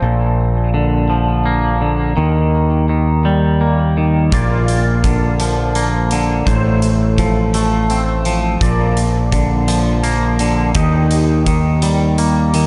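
Hopeful and cinematic, this slow post-rock excerpt in 6/8 at 56 BPM drifts through Bb major as a twangy, up-front electric guitar plays arpeggios with subtle chorus and delay over a growling overdriven fingered bass, joined at 4.3 seconds by a bright pedal steel guitar holding sustained chords through ensemble chorus and a big rock drum kit with hi-hat and a punchy kick, all soaked in a lush, dreamy hall reverb.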